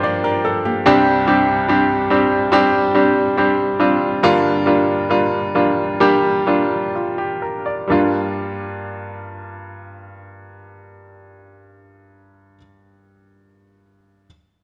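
A bright grand piano sits up front, carrying the accompaniment of this longing, emotional pop ballad fragment in G minor with a polished, brilliant tone and short sustain, spanning low bass notes up to D5. Alongside it, a fingerpicked flamenco guitar with fresh strings adds acoustic arpeggios at the very start, then falls away at 1.4 s. The tempo moves between 62 and 73 BPM in a straight 4/4, easing from 0.9 s to 7.9 s before a new section follows. The harmony shifts from Gm7 to Csus2 and back to Gm7, and the tuning rests slightly high at A4 = 441 Hz. A moderate recital hall reverb surrounds the performance, while the worn, cassette-like tape character lends a wavering pitch drift to this fragment cut from a longer piece.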